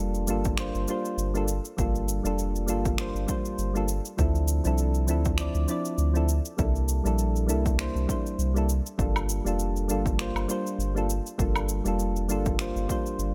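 Warm and wistful, this swung sunset chillout passage, cut from a longer piece, drifts over a Gm9, Dm7 and C13 progression before returning to Gm9. Soft, mellow electric-piano-like synth keys sit up front, shimmering with chorus and tape echo, while a round, dark analog bass holds sustained low notes shaped by a filter sweep. A layered, produced kit of electronic cabasa, finger snaps and woodblock ticks along beneath, joined at 0.5 s by a punchy electronic kick drum, all set in light reverb.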